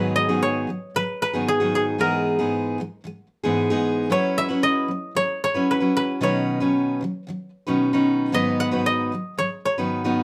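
A koto carries the melody, its woody, dry tone set up front and plucked with fingerpicks across a range from G#4 to F#5. This short acoustic pop excerpt has a sunny, easy-going mood, moving at 114 BPM in a straight 4/4. Underneath, a picked steel-string acoustic guitar plays the accompaniment, also up front, with a warm, auditorium-sized body and touches of finger squeak. Both instruments play together from 0.0 to 10.2 seconds over a progression of G#m7, Emaj7/G#, F#7sus4 and Badd9, returning to G#m7. A moderate studio reverb gives the pair a natural sense of room.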